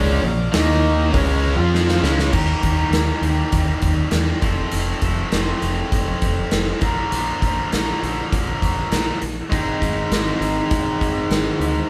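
Classic rock with a swaggering, driving feel, this clip opens with a quiet, shouting tonewheel organ on slow rotary with key click and a biting overdriven guitar tucked in the background, both dropping out at 2.3 s after a drum fill. A tight, bright distorted guitar riff sits up front throughout, over a growling fingered bass with overdrive and a big, polished rock kit that enters at 0.5 s with a punchy kick and medium-tuned snare. The band sounds live in a stone room with moderate reverb.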